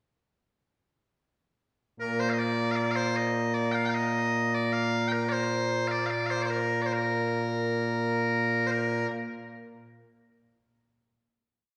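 In a straight 2/4 at 76 BPM, this short, whole piece of Scottish pipe music in B-flat major (tuned to A4 = 439 Hz) has a proud, ceremonial mood. A loud, bright, piercing solo bagpipe sits up front from 2.0 to 9.1 seconds, sounding a continuous modal melody with ornaments across a range from Bb2 to G5, touched by a slapback echo. A pickup bar leads into a single brief strain and a final note at 8.7 seconds, all set in a wet concert-hall reverb heard from further back in the room.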